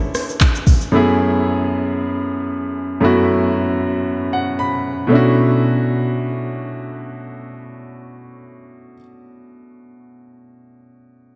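A clear, polished baby grand piano opens this soulful, deep amapiano excerpt in B minor, voicing a rootless Bm11 before moving to F#m11 at 0.9 seconds. A smooth R&B drum kit with an electronic, produced character sounds only briefly up front, from 0.1 to 0.9 seconds: handclaps, hi-hat, a soft kick, rim click and shaker, with silky hats and a tape-warm tone carrying the air of a large room. The tempo sits at 115 BPM in 4/4 with a light 16th-note swing, and the opening stretch works as a drop that runs until 5.1 seconds. Near its close, from 4.1 to 5.1 seconds, the present, up-front piano plays a fill, then returns to Bm11 as a new section begins at 5.1 seconds. The whole mix is soaked in a long cathedral reverb, giving the piece a dreamy, spacious glow as the piano carries on alone to the end.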